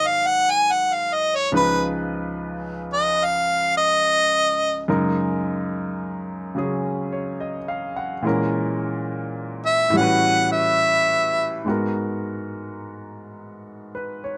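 A melancholic, wistful jazz fragment in swung 4/4 at 71 BPM, where a warm harmonica carries the solo melody with vibrato and scooped notes over an intimate baby grand piano with audible action noise, the harmony moving from Abm11 through Db9, Gb69 and A13 to Abm9, until the harmonica stops at 11.6 seconds and the piano plays alone to 14.4 seconds in a dry, closely miked sound.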